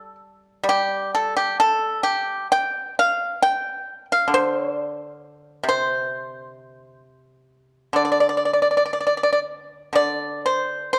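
Loosely rubato phrasing in 4/4 gives this contemplative, elegant fragment of traditional Chinese plucked-string music an unhurried, breathing pulse. A solo pipa, played with fingerpicks, carries the whole 11 seconds, its bright, dry and percussive attack sitting up front as it spans both its low and high registers. A light reverb surrounds the dark production, and a new passage begins at 10.0 seconds just before the cut.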